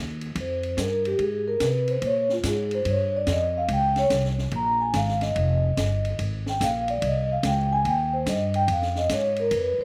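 Cool and swinging, this brief cut from a longer piece is small-group jazz in F minor at 144 BPM, with a woody pizzicato upright bass and a dark-cymballed drum kit of ride, hi-hat, high-tuned snare and boomy kick joining within the first fraction of a second. Up front, a mellow, airy vibraphone played with soft mallets takes the solo from 0.4 seconds, its ringing metallic tone shimmering with fast motor vibrato and a slapback echo over Fm7, Bbm7 and a closing Db. The sound is dry and open-air, with the bass also sitting forward and the drums set further back.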